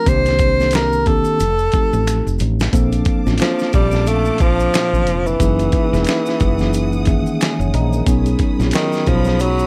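A swung sixteenth-note groove at 90 BPM in 4/4 drives this smooth neo-soul R&B excerpt, where a gritty, compressed sampler-style drum kit with a thumpy kick, a round, punchy fretless bass, background maracas and finger snaps, and a mellow tine electric piano heard through its built-in speakers support an up-front, breathy tenor saxophone solo with scooped notes and vibrato; a drum fill at 2.1 s leads into lush, bowed symphonic strings entering at 2.7 s, an electric piano fill arrives at 6.7 s, and the chords move from Cm9 and F9 through Bbmaj7 and Gb13 to B69 under light reverb.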